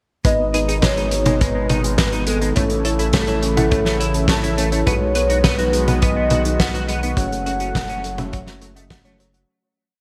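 Synthwave with a nostalgic, driving mood, this short complete piece plays as a single verse over a G#m, A, B6, F#m progression, fading out from 6.4 seconds. A velvety, detuned synth lead carries a motif-based melody with vibrato, chorus and digital delay, set over a smooth supersaw pad whose sustained chords pump gently under sidechain. Behind them, a dreamy FM electric piano with a soft pad layer pulses in gated chord stabs through chorus, tremolo and delay, while a very quiet, dark pluck traces an eight-step arpeggiated sequence. A bright, clean semi-hollow electric guitar picks a repeating sixteen-step riff through analog chorus and delay, and a round, deep analog bass holds sustained roots with tube saturation and sidechain pumping. A tight machine-style kick and an up-front soul kit with a fat snare, closed hi-hat and mid tom drive an 80s backbeat, the kit bathed in gated reverb. The whole track sits in a lush hall with a bright 1980s-style digital sheen.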